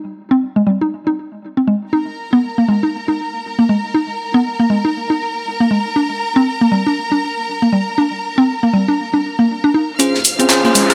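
A woody, nasal synth pluck opens this moody, late-night deep house passage, spinning arpeggios from 0.3 seconds with chorus and tape echo at a swung 119 BPM in Bb dorian, tuned slightly low to A4 = 437 Hz. At 1.9 seconds a lush, bowed violin section enters above it, its vibrato and soft attack adding an expressive symphonic texture. At 10.0 seconds the groove arrives on a Bbm9 chord: a layered electronic house kit of handclaps, hi-hat, rim click and shaker sits up front with studio reverb and high-pass filtering on its hats and percussion. A very quiet acoustic funk kit with a high-tuned snare joins it, and a round analog bass hums dark and deep far down in the mix. Bell-like electric piano stabs, bright and clean with tape echo, punctuate the drop while an electronic riser sits in the background from 10.2 seconds. The dry, gritty hardware sound carries only light reverb and studio ambience, and this fragment is cut from a longer piece.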